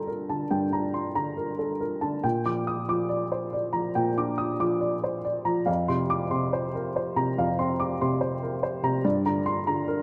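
A woody, slightly detuned upright piano with short sustain plays alone and up front throughout this melancholic, reflective neoclassical minimalist fragment in G minor, moving at a rubato 70 BPM in 4/4 through Gmadd9, Bb6 and Fsus4 before settling on Gm at 9.0 seconds, captured by close, detailed microphones with a light touch of reverb.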